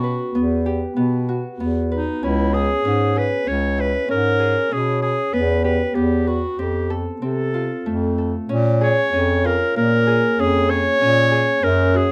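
From the first beat, a clear, soft-attacked clarinet melody, ringing fingerpicked Celtic harp arpeggios and a mellow bass clarinet line unfold together in this restless, hypnotic contemporary chamber piece in 5/4 at 96 BPM, tuned to A4 = 439 Hz and captured dry and close in fine detail, moving into a new section at 8.5 s before the passage breaks off at 12.1 s.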